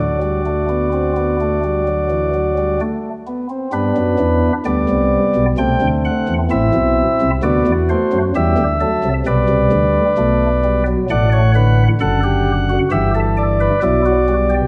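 A chamber organ on soft flute stops opens this 14.7-second passage from a longer baroque-style four-part fugue in G major, moving at a stately yet lively 65 BPM in a straight 4/4. The organ sits up front with a warm chiff and an intimate chamber voicing, its lines ranging from deep bass notes to high upper tones, all carried by a resonant recital-hall reverb. After an opening on D, the harmony settles on G at 3.7 seconds and moves through Am7/C, D7, G/B and D/A before closing on Em7/G.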